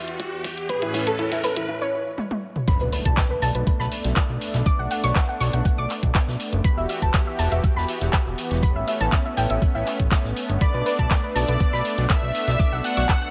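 A straight pulse drives this dreamy, emotional progressive house excerpt, where a lush unison pad and a soft round pluck arpeggio, both pumping with the sidechain, open alongside a riser and impact, a house drum kit fill with bright hats, and an overdriven, knocking electronic kick up front, before the drop at 2.7 s brings in a fat analog bass and a faint acoustic drum kit played with bundle sticks in the background, while a smooth supersaw melody with tape echo and a reversed, swelling granular texture arrive near the end, all in light reverb.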